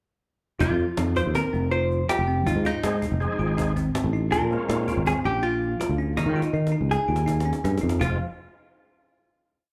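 A brooding, tense progressive instrumental in 5/4 opens with the whole band together: a dark, hollow-body jazz guitar carries an up-front melody of arching motifs over a gritty, overdriven tonewheel organ comping in rootless voicings through a fast rotary speaker. Beneath them sit a bright, bell-like electric piano ostinato and a growly, punchy fretless bass riff, with slapback echo on the guitar, organ, piano and cajon. The snappy, compressed cajon drives the groove and plays a fill from 6.2 to 8.0 seconds before the band lands on a final chord, the performance sounding like a live club gig through the venue's PA with light reverb.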